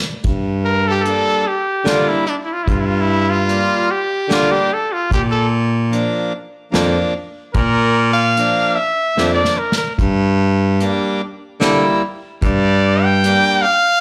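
Soulful and bittersweet, this klezmer excerpt moves at 74 BPM in a straight 3/4, set in G minor and cut from a longer piece. A bright, punchy cornet carries the melody as a forceful, close-miked solo from 0.6 seconds, its vibrato and pop-style phrasing sitting up front with a slapback echo. Beneath it, a baritone saxophone holds the bass line with scooped notes, a smooth top and a jazz-style touch. A reedy, hollow accordion fills in the accompaniment from 1.0 seconds, also carrying a slapback echo. An acoustic drum kit played with bundle sticks keeps time on hi-hat, a punchy kick and a medium-tuned snare, with a fill around 9.2 seconds as the harmony moves from G minor to B-flat and back to G minor. The whole band sounds like a live gig heard through a club's PA, with small-room ambience and club reverb around it.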